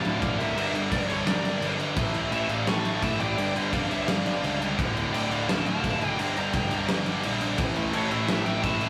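From the first second, a big, dark acoustic drum kit with a fat snare and punchy kick sits up front at 171 BPM in a relentless, half-time heavy metal feel, while two bright, picked high-gain guitars and a very quiet, double-tracked fuzz guitar grind out a low riff over a round, overdriven fuzz bass. A warm, distorted lead guitar carries the melody high above, with a second lead line further back, over an epic progression moving through D5, Gm, A, G5 and Dm. Light reverb and a saturated rehearsal-room sound give this 8.9-second cut from a longer piece a rough edge.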